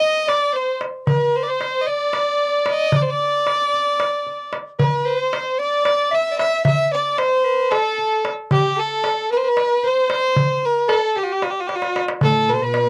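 Melancholic and hypnotic, this Turkish makam ensemble piece moves at 226 BPM counted in eighths, in a straight 7/8, tuned slightly low and settling into A makam huseyni from 4.8 s. A single bowed violin carries the melody up front, its biting, nasal tone intense with vibrato yet smooth at the top, while a clear soprano saxophone shapes a second line with light vibrato and a pop-style solo voice. A darbuka with a clay shell and natural skin plays throughout, small, high and vintage in character, struck with soft hands and placed close. After a drum fill from 11.7 s, a distant, even cello section enters at 12.2 s as another second line, its bowed sound given a slapback echo. The recording is dry and close in a 1970s studio manner with light reverb, and this passage is cut from a longer piece.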